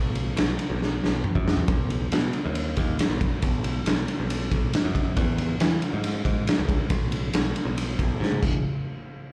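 A raw, saturated garage drum kit sits up front with a punchy kick, medium-tuned snare, crash and ride cymbals and toms, with fills at 0.8 and 8.2 seconds, while a bright, growly picked electric bass drives this gritty 138 BPM blues rock and southern rock power-trio excerpt, heard as a live club gig with light reverb through the venue's PA.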